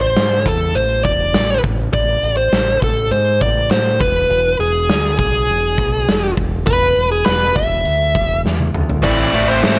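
A straight 4/4 pulse at 101 BPM drives this short cut from a longer classic rock piece, driving and swaggering in A harmonic minor. A big acoustic rock kit of hi-hat, kick, snare and toms has a punchy kick and medium-tuned snare, set in a big room with a rolled-off top, and it plays a drum fill from 8.4 to 9.0 seconds. Underneath, a growling fingered electric bass, overdriven and heard both direct and amped, holds the low end from the start. Up front, a dark, smooth lead guitar with overdrive and plate reverb carries the picked melody over chords moving from A5 to E and on to Am. At 9.0 seconds a crunchy, double-tracked electric guitar arrives with a picked riff, and a moderate studio reverb surrounds the band.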